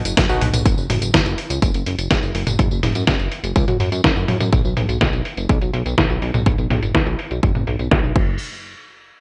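Italo disco at 124 BPM in a straight 4/4, this short cut from a longer piece feels danceable and sunny. A chorused synth bass sits up front from the opening moment, its glossy, retro tone blending pulse-wave, sawtooth and triangle colors with pulse-width modulation, ring modulation and a plucky filter, sounding mellow with a fast attack and sustained notes between F#1 and F#2, roughened by tube saturation and trailed by a digital delay. At 0.1 seconds a detuned 8-bit digital drum machine joins with crash cymbal, hi-hat, a medium-tuned snare, tambourine and toms, its sampler-style kit overdriven, passed through low-pass filters and gated reverb, and placed up front as if re-recorded in a small room. An overdriven, layered electronic kick drum arrives at 0.2 seconds with a punchy hit that carries the air of a large room. A filter sweep runs across the drums for the whole passage, and the bright 1980s-style digital production wraps the mix in light reverb.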